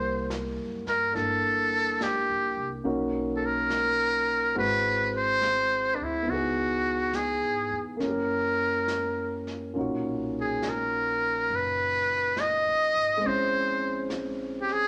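A moderate, large studio reverb wraps this short late-night jazz ballad, cut from a longer piece, in a romantic B major mood at a slow 70 BPM in 4/4 with a gentle swing on the eighths. Up front and close-miked, a trumpet with a metal mute carries the melody as soloist, its tone brilliant, buzzy and thin, shaped by vibrato and scooped notes in a jazz style. Beneath it, a dark baby grand piano supplies mellow accompaniment with long sustain. A woody, pizzicato upright bass with steel strings sits low and deep in the mix. From 0.3 s, a small-room brush kit adds a smooth, shadowy pulse on a medium-tuned snare and hi-hat. The harmony opens on C7#11, settles onto Bmaj7, and passes through C#m7 and F#7b9 before the phrase begins again on Bmaj7, closing on A#m7b5.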